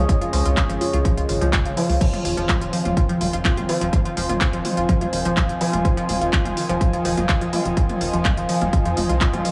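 A straight 4/4 pulse at 125 BPM drives this hypnotic, melancholic melodic techno in F minor, built on a punchy, tape-warm electronic kick up front, a techno kit of handclaps, smooth hi-hats, toms and crash cymbal with sidechain pumping, and a tight, driving sawtooth sequencer bass that pumps along with them. Above it, a round, nasal analog pluck spins detuned arpeggios through chorus, phaser and digital delay, while an edgy sync-sweep polysynth fires bright stabs under a filter sweep as the harmony moves from Dbmaj7 to Fm7 at 2.0 s. A very quiet, string-like drone with vibrato and a lo-fi, warbling tape-like pad sit in the background, joined at 2.0 s by a lush, airy unison pad with chorus and phaser, all within light reverb in this short cut from a longer piece.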